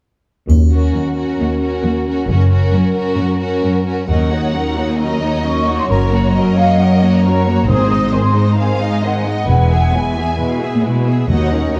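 Heroic adventure film score at 133 BPM, soaring and adventurous, where a mellow French horn section holds chords for the opening bars over lush, up-front cellos and double basses, a faint triangle, a vibrato-rich violin melody with a second violin line, and dark, intimate sul tasto violas, before an airy, distant flute ensemble joins at 4.1 seconds and hard-mallet timpani strike at 7.7 seconds through Ebm7, Gb, Ab and E chords in a moderate scoring-stage reverb.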